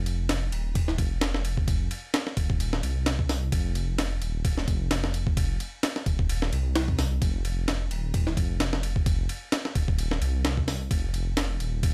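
A sampler-style breakbeat kit leads this energetic, funky breakbeat excerpt, coming in at 0.1 seconds with a thumpy kick, a medium-tuned snare, hi-hat and ride cymbal. The kit sounds compressed, gritty and pitched up, with a tape-colored character from being re-recorded in a small room, and it sits up front in the mix. Underneath, a dark detuned saw bass begins at 0.0 seconds, spanning Eb1 to C2 with a deep, rumbling tone. It blends sawtooth and sine qualities, and its detuning produces an audible beating. The saturated sound has a fast attack and sustained notes, also placed up front. The groove runs at 130 BPM in 4/4 with a 55% swing on the sixteenths. The dry sound carries the single section through to 11.9 seconds.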